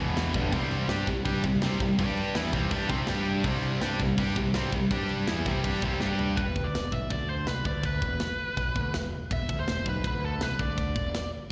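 Heavy metal at 164 BPM in E minor, dark and aggressive, where a bright, up-front distorted guitar and a scooped high-gain guitar in the background play a picked riff with slapback echo until 6.4 seconds over a round, punchy, overdriven fuzz bass and an acoustic kit with a medium-tuned snare and tight kick entering at 0.2 seconds, and after a drum fill a warm high-gain lead guitar carries the melody with slapback and tape echo, the whole clip sounding like a live gig heard through the venue's PA with little reverb.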